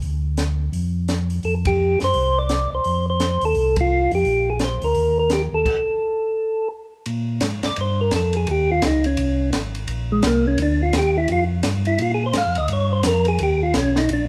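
Swinging eighth notes in a brisk 4/4 drive this bluesy, soulful soul jazz organ trio excerpt, cut from a longer piece. A compact cocktail drum kit, acoustic and dry with dark cymbals, a high-tuned snare and a punchy kick, works through crash, hi-hat, ride, snare and kick, while a mellow, round tonewheel organ carries the bass line with chorus vibrato and a slow rotary speaker. At 1.4 seconds a second tonewheel organ takes the melody, its clean, percussive tone shaped by third harmonic percussion and the same slow rotary, sitting up front over chords like F69, Eb and Ebadd9. The band hits accents together and then stops dead from 5.7 seconds until 7.1 seconds, when a tonewheel organ solo begins and runs to the end over a new section moving through Abadd11 and Bb69. A moderate large-studio reverb and tape saturation give the sound of a band playing live in one room.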